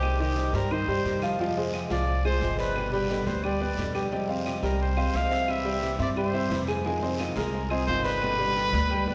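A punchy, vintage-toned solo trumpet leads from the first moment, playing the melody up front with light vibrato over the ensemble in this danceable, sultry Cuban son and guajira excerpt in C minor at 176 BPM. Underneath, an intimate grand piano plays arpeggios with audible action noise, a small fingerpicked nylon-string guitar adds accompaniment, and a dark, thumpy pizzicato upright bass anchors the low end, while woody claves sit in the background beside a raspy guiro. The harmony moves from Cm through Fm and G to C major, then Fm7 and back to G, all bathed in the lush reverb of a concert hall.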